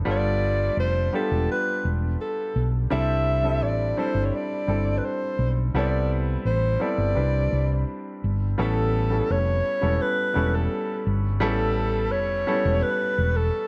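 Lush 1970s-style soul at 85 BPM in a straight 4/4, silky and cinematic, where a mellow alto saxophone carries a jazz-style solo melody with vibrato, scooped notes, a smooth top and slapback echo over clear grand piano chords and a round, punchy hollow-body electric bass sitting up front, the harmony moving from G9 through Cmaj9 before shifting to A7 at 8.6 seconds, framed by light reverb and a dark production in this short cut from a longer piece.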